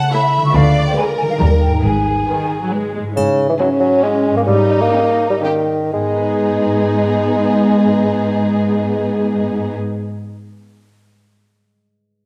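Sneaky and quirky, this short cut from a longer cinematic film cue has a playful, whimsical lilt in three, easing into a slowdown between 2.5 and 5.9 seconds. A close, expressive violin section carries the melody over a lush, distant second violin line, a smooth, even viola accompaniment in the background, and a cello section that glides with portamento in the bass. A mellow, ringing concert harp spins arpeggios throughout, while a pure, hollow flute adds a brief tongued line at the start and a dark double bass section sits up front for just a moment, from 0.5 to 2.2 seconds. From 3.2 seconds a soft-attacked, classical-style bassoon steps forward in accompaniment, joined briefly by a close, dry triangle. The harmony drifts through diminished and dominant colours before settling back on G# minor, all bathed in a scoring-stage reverb with a dusky production.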